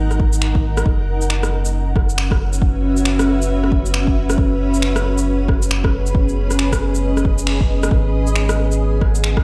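A blurred, detuned granular cloud pad opens this rainy, nocturnal future garage fragment from a longer piece, its sustained chords breathing with sidechain pumping and its own reverb, over a round, deep sine sub bass held up front. Within the first second, overdriven electronic drums join: a deep, layered kick and a swung patter of rim clicks, shaker and finger snaps, both re-recorded in a large room. The band lands an accent at 7.5 seconds before the pad settles onto a minor ninth chord, all bathed in a dreamy plate-reverb haze.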